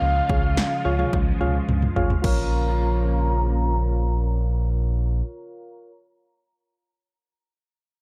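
Synth-pop in Bb minor at 108 BPM, this short excerpt cut from a longer piece feels melancholic yet driving, set in a digital ambience. A mellow, horn-like synth lead carries the melody high in its range, rounded and softly attacked, with vibrato, chorus, a low-pass filter and tape echo. Beneath it a lush vintage string machine holds sustained chords with a slow attack and ensemble chorus, while soft electric-piano-like synth keys enter at 0.3 seconds with gentle, decaying tones that linger until 5.9 seconds. The smooth, gliding synth bass sits dark and up front, sliding between notes with portamento and vibrato. A punchy analog drum machine with tape-warm kick, snare, toms and crash plays from 0.3 to 2.4 seconds, including a fill just before the harmony shifts from Db to Bb minor at 2.2 seconds, as a filter sweep and a very quiet downlifter run through the opening passage.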